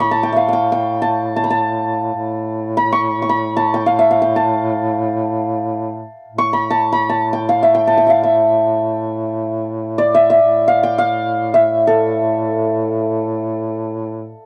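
Festive yet stately, this free-time Persian modal ensemble piece in A dastgah homayun, tuned to A4 = 443 Hz, is cut from a longer work. An up-front hammered santur carries the shimmering, ringing melody from A4 to E6 across the full 14.5 seconds, while a mellow duduk sounds from a distance, holding a folk-style drone on A2 with vibrato and scooped notes. The dry, close 1970s-style studio sound carries a light touch of reverb.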